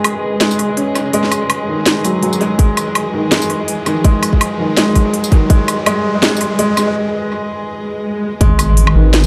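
A dark chamber string section, a felt-muted upright piano and the drum kit all enter together to open this tense, cinematic piece of half-time drum and bass, the strings holding soft-attacked, sul tasto chords with light vibrato under a low-pass filter and sidechain pumping. The piano plays mellow arpeggios up front, its thin felt and audible action noise caught through a low-pass filter and dub echo, while the drum kit brings a cracking snare, crisp hats, tambourine and woodblock with studio reverb and analog delay. In the background, an electronic riser builds from 0.3 seconds, and a tight, tape-warm electronic kick drum joins at 2.6 seconds before dropping out at 5.6 seconds. A swell leads into an impact at 8.4 seconds, where a deep, detuned wobble bass with chorus lands on a low G# alongside a brief return of the kick. The whole mix sits in a moderate spring reverb and is heavy with echo, cut from a longer piece.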